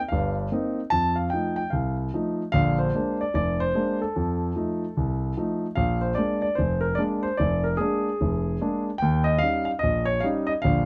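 A dark, mellow grand piano sits up front in this relaxed, playful solo jazz passage, swinging in 4/4 at 148 BPM in B-flat mixolydian and spanning from deep bass notes to the upper middle register. The harmony moves through Cm7, F7, Bb7 and Eb7 across two matching sections, with the piano playing from 0.1 to 10.9 seconds. Close, detailed microphones and a light reverb give the piano an intimate presence in this short excerpt from a longer piece.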